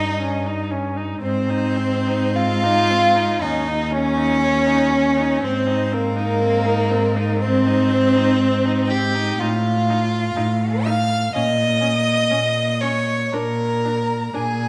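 A serene, lyrical slow movement for string quartet opens with all four players bowing together from the first moment, in Ab major at 60 BPM in 4/4 with a flexible rubato feel. The first violin carries the melody, ranging from Bb4 up to F6 with a warm, close tone, soft attacks, vibrato and expressive portamento slides. Just beneath it, the second violin's focused line with its smooth top sits up front in the mix, while the cello anchors the bass between Eb2 and Bb2 with an even, smooth, close sound. The viola's accompaniment hovers in a narrow band from C4 to Eb4, sounding distant and soft-edged, with its own vibrato and portamento, and it falls silent at 14.4 s, just before the others. The harmony moves gently from Eb7/G to Ab and Dbsus2/Eb, then through F7/A and Bbm to an open Bb7, all bathed in a moderate scoring-stage reverb that lends the fragment a spacious, lingering glow.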